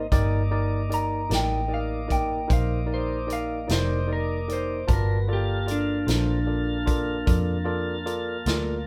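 A slow 12/8 blues at 50 BPM with a straight feel, this brooding, soulful fragment moves from Cm7 to Gm7 at 4.9 s over a natural, punchy country drum kit and a round, foam-muted vintage electric bass, both up front. A barky tine electric piano comps while a smooth tonewheel organ holds chords through a slow rotary speaker. From 0.9 s an electric guitar through a small old amp carries the melody with a slightly broken-up, compressed tone, the band captured live in one room with moderate studio reverb.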